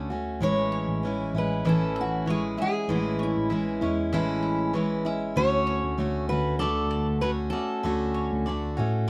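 This sunny, easy-going acoustic pop excerpt opens with a full-bodied jumbo steel-string guitar picking the accompaniment up front, with audible finger squeak. Alongside it, a second fingerpicked steel-string guitar carries the melody and a mellow tine electric piano holds the bass through its built-in speakers. At 0.7 seconds a bowl-back mandolin joins with double-string arpeggios in the background, while the relaxed 97 BPM groove in A major moves from Amaj7 to Dmaj7 at 5.4 seconds, all recorded outdoors with little reverb so the warm acoustic tones sit close and dry.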